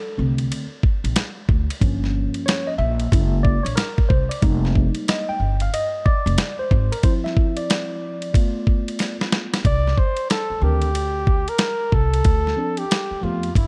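A breathy, close-miked flugelhorn with light vibrato takes the melody at 9.7 seconds in this mellow, smoky jazz-hop excerpt at 92 BPM with a swung 16th-note feel, following a featured solo from a worn, slightly out-of-tune tine electric piano with phaser over jazz chords, backed by a growly, woody pizzicato upright bass and a gritty, compressed sampler-style drum kit with a thumpy kick whose fill at 9.0 seconds leads into the horn's entry, within a dark, dry mix.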